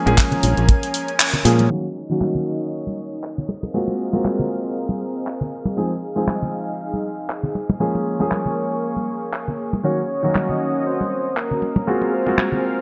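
Nu-disco with a sleek, cosmic mood and a gentle swing, built on a short-sustained grand piano and a lush, detuned unison pad with a vintage warble, both pumping under sidechain compression over seventh-chord and thirteenth harmony. A dry, dark kick and a growly, punchy fingered electric bass are heard only in the opening moments; the layered electronic kit, with its crash, handclaps and hi-hat, and the bright, close congas continue beneath a filter sweep from 1.7 seconds. At 9.8 seconds a round, mellow octave-layered synth lead enters with vibrato, chorus, tape colour and delay, all held in a moderate echo-chamber reverb.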